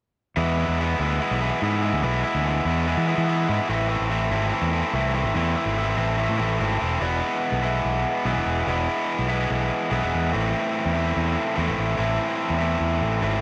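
Brooding, driving rock at 145 BPM in straight 4/4, cut from a longer piece, in which an up-front, bright overdriven electric guitar picks a riff over a growling, punchy fingered bass with its own overdrive, both playing throughout as the harmony moves between E and Am and the second section begins at 7.0 seconds, all set in a light digital reverb.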